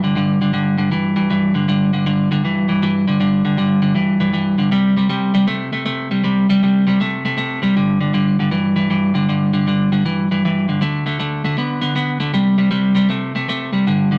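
A clean electric guitar plays alone from the start, picking through power-chord changes on G, C and D in a brooding, smoky blues at 158 BPM with a swung eighth-note feel. The guitar sits up front, compressed and low in register, its tone warm. The rough rehearsal-room recording adds warm saturation and a stone-room reverb that lingers around the notes through this 14.2-second cut from a longer piece.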